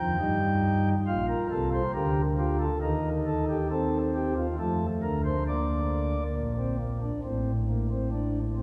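Classical baroque-style three-part fugue in a stately, elegant triple metre, played solo on pipe organ flute stops with a soft, romantic voicing that sits up front yet blooms into a long, wet church reverb of 3.0 seconds, its brief span moving from an opening passage into a new section at 6.3 seconds before the cut at 8.6 seconds.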